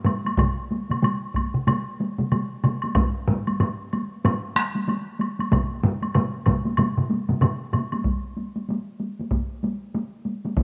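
A lightly reverberant home recording on cassette captures a ceremonial, powerful Japanese traditional taiko piece at 94 BPM in 4/4 with a 60% swing on the sixteenths, cut from a longer work, in which two up-front solo taiko drum parts struck with heavy sticks (one vintage and band-limited, the other close) join two small-room taiko ensemble parts and a woody woodblock heard in a live room that stops at 8.0 seconds, just before the music moves into a new section at 8.1 seconds.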